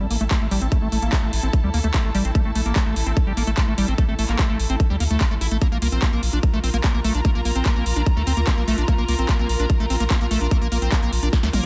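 Opening at once on a round, deep analog bass, a squelchy acid riff soaked in chorus and dub echo, and a dark bowed chamber string section, this driving, hypnotic psychedelic trance excerpt in A phrygian at 147 BPM adds a tight, up-front electronic kick and a punchy big-room kit of handclaps, metallic hats, snare and toms, with the acid riff and strings pumping against the kick over a dense, heavily limited mix, before a drum fill at 11.3 seconds.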